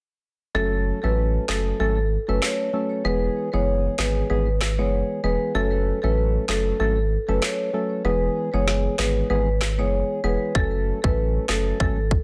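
A swung 96 BPM dancehall groove in 4/4 bounces along in F# minor, with the electronic island pop drum kit's handclaps and woody snare arriving at 1.5 s and its tight kick held back until 10.6 s. A deep, round sub bass sits up front beneath hollow, dark organ stabs with chorus that move between F# minor and E, while a marimba played with medium hard mallets carries an airy melody through tape echo. The hypnotic piece is cut from a longer one, with a dry room and a dense, heavily limited modern master.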